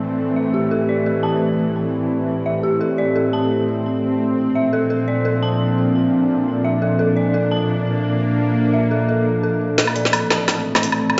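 Tense and heavy, this excerpt of half-time drum and bass moves at 172 BPM in 4/4 with a light swing on the sixteenths, set in A Phrygian and shifting from Am to Bb at 4.2 seconds before returning to Am at 9.8 seconds. A bowed-like drone holds sustained chords throughout, its string-like sawtooth tone bright and up front, with a noise layer, vibrato, a slow attack and a long release bathed in its own reverb. Above it, a dark detuned synth bell plays eerie, inharmonic FM arpeggios that strike quickly and decay, colored by chorus, phaser, a low-pass filter and delay, with a filter sweep on the bell from 9.8 seconds. At that point a build-up begins as the electronic drum kit enters with a fill, its layered, overdriven sound pairing a woody snare and woodblock with bright hi-hats in a small room ambience. The whole mix sits in a wet echo chamber and a large studio reverb, heard as if through a big sound system in a bare room, with a top end that rolls off above 7.8 kHz.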